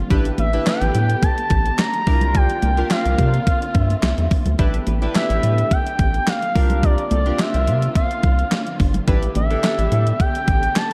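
An overdriven, thumpy 8-bit drum machine with handclaps drives this slick, danceable early-eighties boogie funk excerpt, joined by a rubbery square-wave bass up front, a glossy chorused polysynth with slapback echo, a smooth portamento lead with vibrato, lush bowed strings in the background and very quiet high-tuned congas over A9sus4 and C9sus4 chords, set in a light digital ambience.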